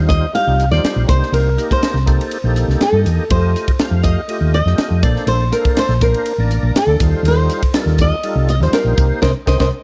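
A fingerpicked flamenco guitar with fresh strings carries the melody in this bright, funky electric jazz fusion excerpt, set in Eb lydian at 122 BPM in a straight 4/4. Beneath it, a hollow-body short-scale electric bass sits up front with a dark, round, amped tone, the loudest part of the mix. A warm, full tonewheel organ supplies accompaniment through a slow rotary speaker, with light overdrive and chorus vibrato giving it a gently churning body. A tight funk drum kit, recorded in a small room with a high-tuned snare and a tight kick, joins at 0.1 seconds on hi-hat, kick, snare and ride cymbal. The harmony moves through Eb69, Cm7, F9 and Bbmaj9 before returning to Eb69, and the full band hits an accent from 9.2 seconds as the clip, cut from a longer piece, closes under light reverb.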